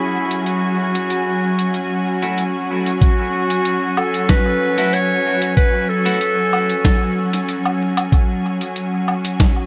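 A straight 4/4 pulse at 94 BPM carries this hazy, meditative ambient dub in F# minor, where a very quiet, bubbling sawtooth filter texture gives way at 3.0 s to an overdriven, thumpy electronic kick up front, ahead of a muffled, pitched-down sampler kit of hi-hat, snare and woodblock soaked in dub echo, while a biting, earthy bowed string section holds sustained chords, a clear, vintage-toned solo clarinet sings its melody through dub echo, and a bright, clean picked electric guitar adds faint stabs, the whole set inside a huge ambient reverb.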